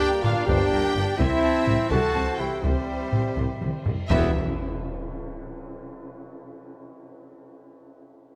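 Epic and heroic, this brief cinematic orchestral cue moves in a lilting 6/8 as a lush, vibrato-rich violin section carries the melody, joined by a second violin section and a bright, airy flute on a second line, very quiet violas, and a full brass bed where a tight French horn section dominates the sustained chords beside a clear trombone section, mellow trumpet stabs and a soft tuba. Cellos and double basses anchor the low end with the tuba while a compressed, saturated taiko ensemble drives underneath, with a cymbal swell and tam-tam rising from 1.2 s. A drum fill leads into a band accent and impact at 4.1 s, where hard-mallet timpani strike, and a huge sub drop follows at 4.4 s, rolling out through a moderate scoring-stage reverb.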